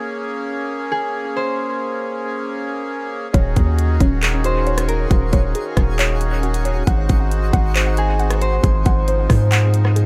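A reedy accordion holds sustained chords with sidechain pumping, soon joined by a fingerpicked concert harp melody ringing through tape echo, before this hazy, melancholic cloud-rap drops into a half-time groove at 3.3 seconds, when up-front trap drums with a hard-clipped kick and bright hats arrive alongside a deep, sine-toned 808 bass and dark, chorused pluck arpeggios in the background, with a sparkling granular texture drifting in at 4.0 seconds in an echo-heavy, dry-sounding mix cut from a longer piece.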